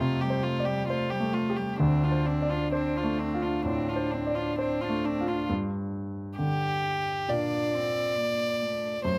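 A melancholic, fragile neoclassical piece in 4/4 with a rubato feel opens at once with a polished, up-front grand piano accompaniment beneath a single bowed violin carrying the melody in a floating sul tasto tone, while a solo cello adds a distant, pure second line below, captured by close, detailed microphones with light reverb as the harmony moves from Fadd9 through Dm7 to Gm7 at 5.5 seconds in this short section cut from a longer work.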